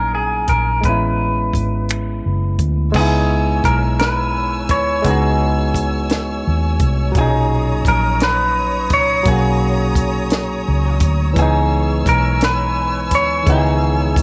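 A lightly reverberant studio sound frames this slow, sensual six-eight R&B at 57 BPM, tuned to A4 = 445 Hz, as a bright, twangy clean electric guitar carries the melody over a barky, lightly overdriven tine electric piano, a round, foam-muted vintage bass up front, and a dry, compact cocktail kit with finger snaps, a high-tuned snare, punchy kick and dark cymbals entering at 0.5 seconds, before a smooth, vibrato-rich string section adds sustained chords from 2.9 seconds as the harmony moves from Bmaj9 and Amaj9 to C#m7.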